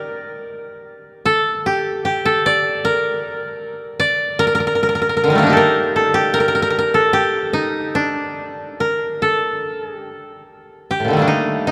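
This is Japanese traditional chamber music, a short fragment cut from a longer piece, with an austere, calm mood. A solo koto plays the entire 11.7 seconds, moving freely in rubato around a loose pulse of 71-78 BPM in 4/4. The instrument is acoustic and played with fingerpicks, giving a bright, woody tone that sits up front, while its lines span from A2 to D5 in the D miyako bushi mode. A long, wet cathedral reverb of 4.4 seconds surrounds the playing and lends the spare music a spacious, solemn air.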